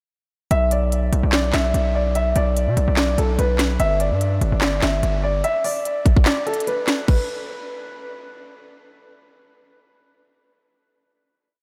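A distorted, saturated 808-style bass drives this menacing, dark trap hip hop piece at 146 BPM in a half-time feel, its heavy long sub-bass notes sliding in pitch under a Bm to G5 progression in B minor before it stops at 5.4 seconds. A mellow, boxy grand piano repeats a looping melody like a sampled loop through analog delay, while an electronic trap kit supplies a hard-clipped kick, sharp snare layered with handclaps, crisp hi-hats with fast rolls and crash cymbal, the kick muting at 6.3 seconds. The mix is dreamy and soaked in huge ambient reverb, with the piano's final note sounding until 8.3 seconds.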